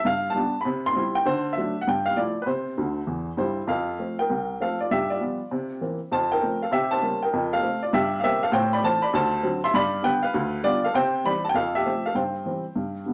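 A brisk swing at 198 BPM in 4/4 drives this playful, exuberant stride piano piece, with eighth notes lilting at a 63% swing. A lone upright piano carries everything, spanning C2 to C6 with a woody, polished tone that sits up front and present, its notes decaying quickly. The harmony opens in C major, moving through chords such as G, D and Gsus2, and a piano fill at 2.8 seconds leads into a shift to F major at 3.7 seconds. From there the progression runs through G7, C7 and F before settling back into C major at 8.5 seconds, with Am, D7 and G7 turning around toward a closing C/G. A moderate studio reverb adds a touch of room around the piano, and the passage is cut from a longer performance.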